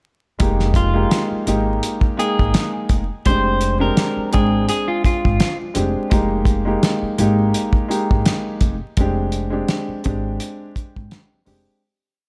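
Boom-bap hip-hop with a tough, reflective mood, this short piece rides a lightly swung groove through a single verse. A cloth-damped drum kit sits up front, with a tight, hard kick, a fat backbeat snare and hi-hat, its thuddy small-room sound rolled off at the top. An acoustic upright bass plucks a deep, woody looped line with muted ghost notes, while a dark concert grand piano plays chopped, mellow chords repeated like a sampled loop, its audible action noise adding an intimate, vintage feel. An electric guitar at the edge of break-up enters at 0.8 seconds with a short fingered melody, also looped and coloured by spring reverb and tape echo, before it drops out at 5.6 seconds. Vinyl crackle colours the recording, and the music fades out from 9.0 seconds to its close at 11.8.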